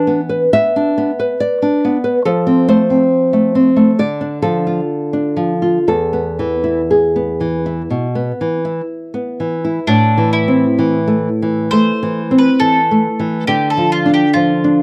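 A bowl-back mandolin enters at 9.9 seconds with a picked, double-stringed melody over a dark, small-sounding fingerpicked nylon-string guitar that has played alone from the start, in a melancholic, yearning romantic duo in A minor at a rubato 58-71 BPM, moving through chords such as E7, F and Dm, captured in a dry, close 1970s-style studio sound with both instruments up front, cut from a longer piece.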